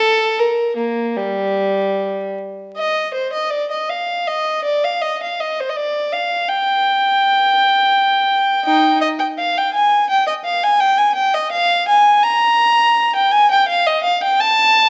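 Classical baroque-style suite movement for unaccompanied violin, solemn and introspective at 82 BPM in a free, rubato 4/4, in which a single dark-toned bowed violin sits up front with smooth, even vibrato across a range from G3 to Bb5, framed by moderate recital hall reverb and a layer of vinyl crackle in this short portion of a longer piece.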